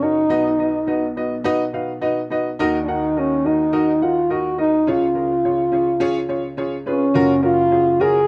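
Soul at 105 BPM in 4/4 with a straight feel, this short cut from a longer piece has an uplifting, danceable mood in F# major, tuned to A4 = 439 Hz. A mellow French horn carries the melody from start to finish, its classical-style solo sitting between C#4 and G#4 with vibrato and a roomy presence. An upright piano accompanies throughout, spanning F#1 to F#5 with a woody, slightly detuned, vintage character and a smooth touch. The harmony moves through B, D#m and C# before settling on F#maj7 at 7.1 seconds, where a new section begins. Light reverb and a dark, warm production shape the recording.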